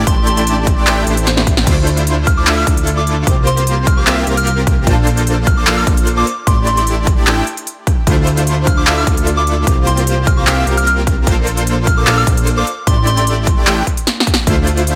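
A very quiet, clear string section holds sustained chords for the first 1.7 seconds beside huge, bright supersaw chords and a fat, detuned analog bass, both pumping with sidechain, opening a dreamy, lush half-time future bass excerpt in which a soft, pure FM bell carries the melody through chorus, phaser and digital delay, while a punchy, tape-warm electronic kick sits up front beneath a big-room dance kit of crisp hats, handclaps, crash cymbal and snare, with drum fills at 1.3 and 14.1 seconds.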